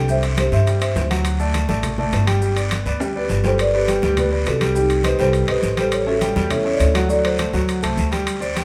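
A woody rosewood marimba melody opens this sunny, danceable 205 BPM salsa excerpt in G major over an up-front, deep-bassed concert grand piano and a dark, growly pizzicato upright bass, with ringing congas, raspy saturated guiro, grainy background maracas and close metal-shell timbales joining at once, before the marimba drops out and returns at 3.2 seconds in the middle of a drum fill that leads into a new passage at 3.6 seconds, the band sounding live together in a large studio room.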